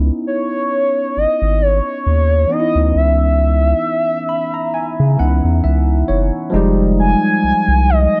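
R&B excerpt at a slow 67 BPM with a light sixteenth-note swing, soulful and introspective in a dark, dry production, where a round, deep analog bass anchors a barky, bright tine electric piano with subtle chorus, adding a fill from 3.8 to 6.5 seconds, while a smooth, detuned portamento lead with vibrato and chorus glides over Dbm9 before the shift to Fm9 at 6.5 seconds.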